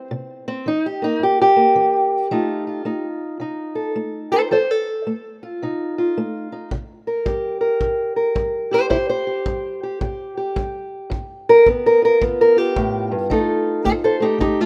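Laid-back and gritty, this short acoustic country blues excerpt rolls along in a relaxed swing, cut from a longer piece. An old ladder-braced acoustic guitar, fingerpicked and set up front, carries the melody across the whole 14.7 seconds, its dark, woody, boxy tone colored by old strings. A distant, roomy kick drum played with brushes joins at 6.7 seconds, tight but set well back behind the guitar. The harmony moves through dominant-seventh chords, from C7 to F7, back to C7 and on to G7 before landing on F7. Light reverb and a small room ambience give the rough home demo mix an intimate, unpolished feel.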